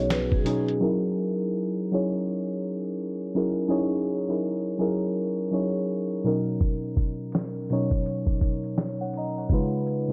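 Swung sixteenths at 83 BPM in 4/4 give this dreamy, nostalgic lo-fi hip hop fragment its lilt, carried by a muffled, pitched-down sampler drum kit with a thumpy kick and gritty 12-bit crunch that drops out at 0.8 seconds and returns at 6.6 seconds, beneath up-front, muted felt-like synth keys with a dark, chorused tone and a filter sweep, while a mellow soft-mallet vibraphone with slow motor vibrato and analog delay rings faintly in the background only until 0.8 seconds, the mix veiled in vinyl crackle, a low-pass filter and light digital ambience.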